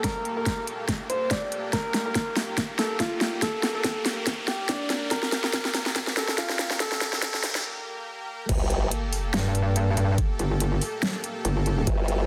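Metallic, aggressive wobble bass dominates this chaotic, heavy dubstep fragment, surging up front with saturated FM tone from 9.3 seconds after a formant-filtered wobble bass first stabs in at the drop at 8.5 seconds. Before that, the build-up rides a half-time 142 BPM groove in G minor with a swung sixteenth feel. A clear concert grand piano carries the melody through tape echo and a low-pass filter until 7.4 seconds, over a lush, detuned supersaw pad that pumps against the sidechain on a sustained Gmadd9 chord. The overdriven dubstep kit pushes a huge snare, hi-hat and crash through a drum fill, layered with a knocking electronic kick, while a riser and sub drop sit in the background, climbing through the build before a brief break and an impact at the drop. The mix is dense and heavily limited with light reverb, cut from a longer piece.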